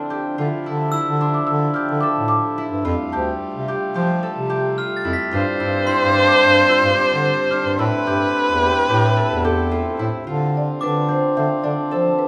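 An expressive bowed viola with vibrato and portamento comes up front from 5.3 to 10.0 seconds in this restless, hypnotic chamber excerpt in 9/8, over a reedy, breathing pedal harmonium holding chords, ringing fingerpicked harp arpeggios, a mellow, close-miked bass clarinet bass line, woody soft-mallet marimba carrying the melody from 1.2 seconds and a dark, bell-like glockenspiel in the background, set in a wet recital hall.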